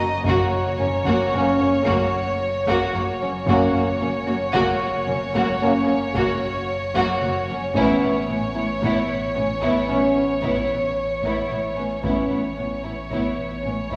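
A mysterious, eerie suspense film score cue at 56 BPM in 4/4, this excerpt sets close, intimate string sections playing sul tasto with soft attacks against a warm French horn section that sustains chords from 1.3 to 12.5 seconds. Violins carry the melody and a second line up front, while dark violas, cellos and double basses fill the accompaniment and low end beneath a deep sine sub bass drone, a bright, brilliant baby grand piano texture that rings until 7.8 seconds, and a dry taiko ensemble struck with heavy sticks in the background. The harmony moves from F# to Aadd9 at 7.7 seconds, all bathed in a wet scoring stage reverb.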